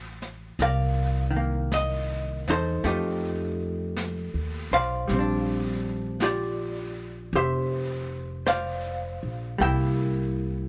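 Lazily swung eighth notes in a slow 4/4 carry this romantic, intimate jazz ballad fragment, cut from a longer piece, as an up-front vintage hollow-body electric guitar comps dark, clean, compressed picked chords moving from Fmaj9 through Cm9 and F9 to Bb69 before landing on C7. Beside it, a bright, woody pizzicato upright bass sits close and present, while a softer brush kit of snare and hi-hat joins at 0.2 s with a natural studio-room sound. The mix is dry and close, leaving the trio's detail plainly audible.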